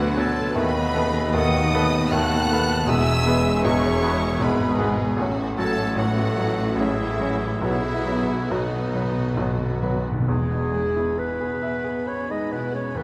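A wet recital hall bloom surrounds this short, lush and passionate fragment of a romantic movement for piano and orchestra, flowing in an unhurried, rubato triple metre. A clear, up-front baby grand piano carries the melody across a broad span, joined high above by a rich, expressive violin section singing with vibrato, while a more distant, focused second violin section, a hollow, pure flute, a roomy oboe and a very quiet clarinet weave second lines beneath. A viola section and a faint bassoon fill in the accompaniment, as a dark, remote French horn section and a tight, bright trombone section hold sustained chords. The low end rests on a smooth, even double bass section, a cello section with expressive portamento, and a present tuba, all very quiet or set back. Soft-mallet timpani, round and dry, add a gentle fill from 7.6 seconds as the harmony settles toward home at 10.3 seconds, and flute, oboe, trombones, tuba and bassoon have dropped away by about 10 seconds, leaving piano, strings, clarinet, horns and the fading timpani to carry the close.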